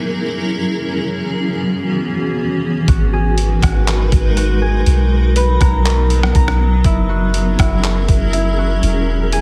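This short excerpt has a heavily compressed, radio-like sound with a digital ambience, giving it a hazy, spacious feel. It is atmospheric cloud-rap at 121 BPM in 4/4 with a half-time feel, tuned to A4 = 438 Hz. A cloudy, detuned granular pad opens alone, holding blurred, evolving chords from E3 to B4 with its own reverb and a sidechain pumping. At 2.9 seconds the rest of the parts arrive together: a thumb-plucked Celtic harp ringing out arpeggios through tape echo, a deep, round 808-style bass, and a gritty, pitched-down sampler-style kit of thumpy kick, hi-hat, handclaps and rim click that sounds re-recorded in a large room. The bass and drums sit up front, while the chords move through F#7, E6, G#m7 and Bmaj7 before returning to F#7 and E6.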